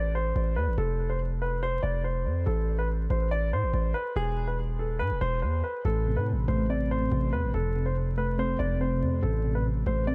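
A small, dark room sound with vinyl crackle frames this ominous, menacing drill beat, a short cut from a longer piece in A minor at 142 BPM with a half-time feel. A dark baby grand piano carries the melody from the start, mellow and long-sustaining, its upper register softened by a low-pass filter and trailed by digital delay. Beneath it, a distorted 808-style bass sits up front, heavy and aggressive, with a fast attack, a decaying tail and a gritty noise layer. At 5.8 seconds, soft electric-piano-like synth keys enter as accompaniment, round and gentle, shimmering with chorus and phaser under a low-pass filter. The harmony circles around A minor, moving through F and E chords before settling back.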